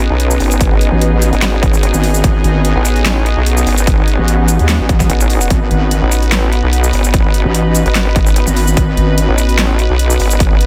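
Swung half-time 4/4 at 147 BPM drives this aggressive, chaotic heavy wobble dubstep fragment in G# phrygian, where a nasal, formant-filtered vowel-sweep wobble bass and a detuned square-and-sine wobble bass entering at 0.9 s sit up front with chorus and overdrive, an overdriven electronic kick punches in at 0.6 s beside a big-room dance kit of huge snare, handclaps, hi-hat and shaker, and a lush, thick unison pad pumps alongside a mellow, lo-fi tape-like pad that warbles through phaser and reverb in the background, all in a lightly reverberant room carrying a faint mains hum.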